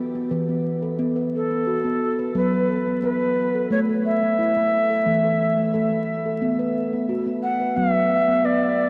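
Meditative and hypnotic, this short excerpt of world-style tuned percussion moves at an unhurried, straight pulse. A steel tongue drum opens alone at 0.0 seconds, struck with rubber mallets and sounding round, pure and ringing as it spins out arpeggios through an analog delay. At 1.4 seconds a mellow cedar flute joins with the melody, its woody, airy straight tone tongued and softened by rolled-off highs, carried on shimmer reverb and analog delay. Both instruments sit up front and at the same level, while the dreamy mix is soaked in a huge ambient reverb with a 7.1-second tail and a layer of vinyl crackle. The harmony drifts gently from E5 to B5, A5 and back to B5 before the clip ends at 8.9 seconds.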